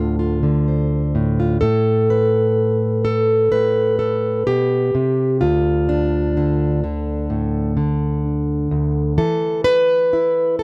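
A fingerpicked, plugged-in steel-string acoustic guitar carries this haunting, intimate folk excerpt alone, its full-bodied jumbo tone sitting up front in a dry, close 1970s-style studio sound. At a slow 63 BPM in straight 4/4 and D dorian, it moves from Dm7 to Amadd9 at 1.6 seconds, then through Dm to a closing E5, spanning D2 to C5 within a short fragment of a longer piece.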